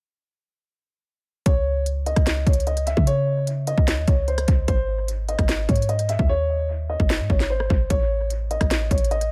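This hip hop cut in a trap style has a brooding, menacing mood and a half-time feel. All three parts enter together at 1.5 seconds: a dark, boxy baby grand piano carries the melody with short sustain, shaded by a low-pass filter and an analog delay. Beneath it, a clean 808-style bass lands deep and boomy, a sine-like tone with a fast attack that decays into a mellow tail. The electronic trap kit is tape-warm, pairing a hard-clipped kick with a sharp snare, rim clicks and crisp hi-hats, and the hats drop out from 6.3 to 7.9 seconds. The harmony moves from C#sus2 to G# and then A, and the echo-heavy, dry mix keeps the piano, bass and drums up front.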